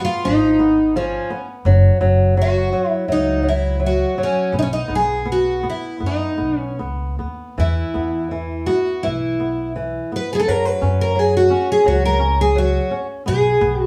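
A shimmering, octave-doubled twelve-string acoustic guitar carries the picked melody, with audible finger squeak, over a fingerpicked flamenco guitar with fresh strings, joined at 0.3 s by a dark, woody pizzicato upright bass, all three up front in a longing, mournful fado-style ballad played live in one room at a rubato 74-87 BPM in 4/4 with moderate studio reverb, its harmony moving from Fm7b5 through F#5, B and E5 before settling back on F#5.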